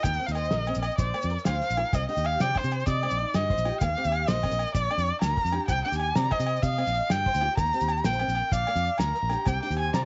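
A rich, expressive erhu carries the melody up front, bowed with vibrato and portamento over a bittersweet highlife guitar band groove in C minor, moving at 128 BPM in a straight 12/8 as the chords cycle through Cm, Eb and Bb. A round, foam-muted fingered electric bass and a dark, cloth-damped drum kit with a fat snare and tight kick anchor the sound, while a fingerpicked steel-string acoustic guitar, a twangy, slightly broken-up electric guitar playing chorused arpeggios, ringing agogo bells and grainy maracas sit in the background. A reedy accordion slips in with sustained chords at 9.5 seconds, and the whole cut from a longer piece has the light reverb and rolled-off top of a home cassette recording in a small room.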